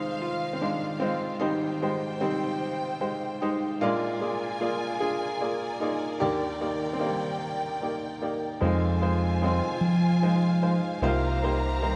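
Melancholic and reflective, this acoustic folk-pop ballad unfolds in an unhurried 6/8 with a straight feel, cut from a longer piece. An upright piano carries the melody from the start, its tone clear and woody with a short sustain, sitting up front across a range that reaches from deep in the low register to the upper middle. Beneath it, a symphonic string section holds bowed chords throughout, lush and close, with soft attacks and expressive vibrato giving the harmony a gentle glow. At 8.6 s a fingered electric bass joins, dark, round and punchy, adding weight as the harmony moves from Fm7 to a closing Cm7 at 11.0 s. A moderate concert hall reverb surrounds the parts, lending the sparse arrangement a spacious, contemplative air.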